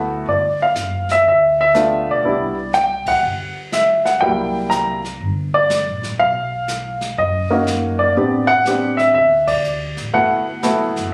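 An intimate baby grand piano with audible action noise carries the melody over a woody, growly pizzicato upright bass from the first moment, joined at 0.3 seconds by an airy brushed drum kit with dark cymbals and a boomy kick, in this playful jazz piano trio excerpt that swings at 122 BPM in G major, with rich extended chords, band accents at 3.0 and 9.4 seconds, and a roomy phone-recorded sound in light club reverb.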